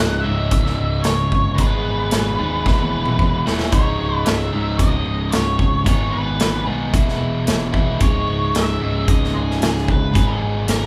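A double-tracked, crunchy overdriven guitar riff and a dark octave-fuzz lead melody open this gritty, swaggering classic rock excerpt in C# minor at 112 BPM, with a bright, direct picked electric bass underneath. An acoustic rock drum kit with a boomy kick and medium-tuned snare enters at 0.5 seconds, sits up front alongside the rhythm guitar, and plays a fill from 2.7 to 3.7 seconds as the chords cycle through C#madd9, G#m and E. The band sounds like it is playing live together in one large studio room with moderate reverb.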